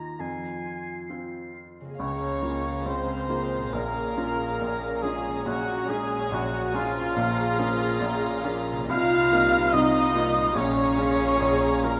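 Set in 4/4 but played with a free, rubato feel, this excerpt from a cinematic film score carries a longing, bittersweet mood. From the opening, a felt-muted upright piano gives soft, intimate accompaniment beneath a very quiet, fingerpicked concert harp, an airy flute, a background oboe with light vibrato, and a clear, present clarinet that sounds only until 1.6 seconds. At 2.0 seconds the mellow cor anglais takes up the melody, shared with a floating studio violin section played sul tasto, while a symphonic violin section adds a higher second line. Dark, woody violas fill the middle, a vintage-tinged French horn section holds sustained chords, and a hushed studio cello section and a pure-toned double bass section anchor the low end with soft-attack bowing. A moderate scoring-stage reverb wraps the orchestra in a gentle sense of space.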